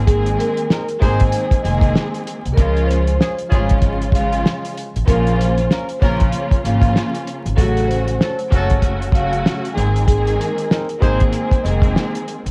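A dusty home cassette recording, dressed in vinyl crackle and studio reverb, frames this nostalgic, confident boom-bap hip-hop cut, taken from a longer piece and riding a swung 16th-note feel in 4/4. A cloth-damped drum kit sits up front, dry and dark, with a fat snare, a tight kick and hi-hat, its top end rolled off. Beneath it, a woody pizzicato upright bass holds the low end, while a lush bowed string section with expressive vibrato plays distant accompaniment, coloured by cassette tape and filtering. A soft-mallet vibraphone carries the melody from 0.1 seconds, its ringing, airy tone marked by slow motor vibrato. A mellow, roomy horn section adds soft-attack stabs with analog delay from 0.7 to 11.2 seconds, as the harmony moves from Abadd9 through Db, Bbm and Gbm before returning to Abadd9.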